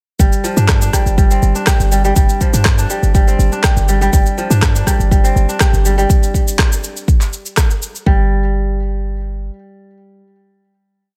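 This driving afro house piece at 122 BPM opens straight into its drop at 0.2 s, with the whole groove arriving at once over a G5 chord. A deep, up-front electronic kick lays down a four-on-the-floor pulse, joined by layered electronic cabasa, rim click and handclaps that carry the programmed hats and backbeat with a tape-warm, small-room character. Underneath, a boomy 808-style bass built from a sine with a noise layer plays a mellow dotted-rhythm line with a fast attack and decaying notes, shaped by sidechain pumping. On top, a crisp, ringing acoustic kora repeats a fingerpicked 16-step arpeggio sequence, colored by digital delay and the same sidechain pumping. The mix is dry, and after the drop ends at 8.1 s, the drums fall away while the bass holds until 9.5 s and the kora rings on until 10.2 s.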